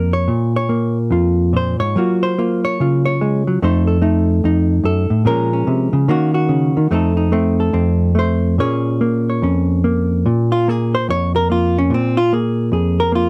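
Solo jazz in Bb minor, moody and cool, a clean, dark electric hollow-body guitar played fingered and compressed sits up front, swinging loosely and rubato around 145 BPM through a close, detailed sound with light reverb, moving over Bbm, Gbmaj7 and F7 changes across a short 13.3-second excerpt cut from a longer piece.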